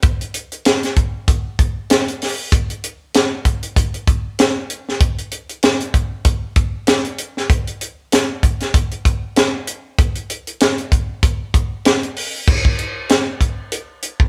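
A moderate stone-room reverb surrounds this recording, which sounds like a band captured live together in one room. This short blues excerpt has a swaggering, gritty mood and a swung sixteenth-note feel in 4/4. The only part heard is a tight funk drum kit of crash cymbal, hi-hat, kick drum and snare drum, playing from the start through 14.3 seconds. Its acoustic tone is dry and mid-forward with a rolled-off top, set up front, and it pairs a high-tuned snare with a tight kick. The opening passage runs to 12.5 seconds before a brief new section carries the kit to the close.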